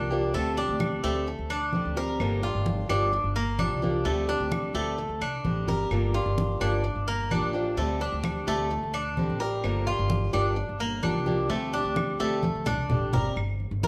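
A dark, boxy picked swing-style acoustic guitar, a bright, metallic Cuban tres playing arpeggios on doubled strings, and a growly, woody pizzicato upright bass open this nostalgic Cuban son and guajira excerpt at 129 BPM, with close, low-tuned congas joining at 0.3 s and distant claves sitting in the background of a large studio reverb as the harmony rocks between D7sus4 and Gm7, before a drum fill at 12.4 s.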